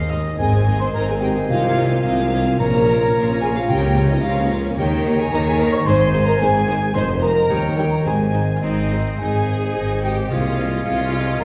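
A wet recital-hall reverb places this playful, mischievous film cue a little further back in the room, giving the full orchestra a soft bloom as it moves at 110 BPM in a straight 2/4 in Ab major. A bell-like, delicate celesta carries the melody in a sweet, ringing voice from the background, joined by a quieter, distant violin section on a second melodic strand. Around it, a very quiet hollow flute, a clear and roomy oboe, a mellow clarinet and a lush, smooth-topped violin section weave second lines, while a mellow bassoon and a close viola section fill in the accompaniment. A dark, distant French horn section holds sustained chords, and a concert harp rolls thumb-plucked arpeggios across a broad range. The low end is a mellow, lush bed of tuba, cello section and warm double bass section, under harmony that moves from Ab through Bbm and Fm7 to Eb7 before settling home on Ab, with the phrase beginning again at 9.2 seconds in this passage cut from a longer piece.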